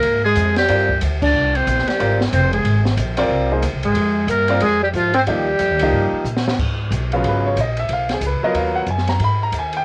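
A swung 4/4 at 183 BPM drives this cool, searching modal jazz fragment, with growly pizzicato upright bass and an open drum kit of dark cymbals, a high-tuned snare and a boomy kick underneath a buzzy metal-muted trumpet melody and a breathy, subtoned alto saxophone second line, both distant and roomy. A brilliant upright piano with audible action noise joins at 0.7 s, a band accent lands at 1.2 s, and after the horns stop at 6.2 s a short drum fill carries the music from F dorian into G# dorian at 6.6 s. The home cassette recording has light reverb.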